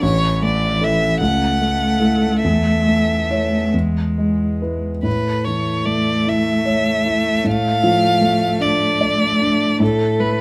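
A moderate studio reverb gives this short cut from a longer piece a gentle sense of space, with the violin and piano sitting up front. It is a slow, romantic classical movement for piano trio in 6/8, played with rubato and a serene, warm mood. The solo violin carries the melody with a rich, smooth, even bowed tone and vibrato. Beneath it, the cello sings a second line, bowed with vibrato and a silky top. The dark concert grand piano supplies the accompaniment, mellow and intimate with deep bass, a vintage character and audible action noise. The harmony rests on A major before shifting to a D minor colour over an A near 7.5 seconds, and all three instruments play throughout the 10.4 seconds.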